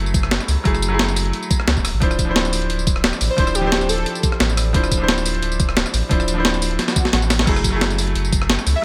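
The excerpt opens on a bright concert grand piano with audible action noise and a dub echo, playing chords from F#m9 to Dm9 over a deep, round sine sub bass in this dreamy, lush liquid drum and bass cut from a longer piece at 176 BPM. Almost at once a gritty, compressed breakbeat kit enters up front, with crash, hi-hat, rim click, a medium-tuned snare and tambourine recorded in a large room, set against an overdriven, knocking electronic kick and a lightly swung sixteenth-note feel. An airy, detuned lead with chorus, vibrato and tape echo appears briefly at 3.3 seconds, soft and mellow. A drum fill arrives at 6.8 seconds alongside a very quiet electronic swell, leading back to F#m9 at 7.5 seconds. The whole passage sits in a digital ambience, and the lead returns for a moment at 8.8 seconds as the excerpt ends.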